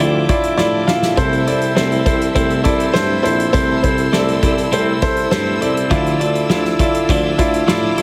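Piano-driven pop at 102 BPM in D minor, bittersweet and driving, cut from a longer piece: an intimate, up-front concert grand with audible action noise plays the accompaniment over a punchy vintage tuba bass, a clean, picked twelve-string electric guitar riff and lush bowed strings with vibrato in the background, while a natural small-room drum kit with a fat snare enters at 0.3 s and plays a fill from 0.6 to 1.2 s, the chords moving from Dmadd9 to Am and back under light studio reverb and a heavily compressed radio sound.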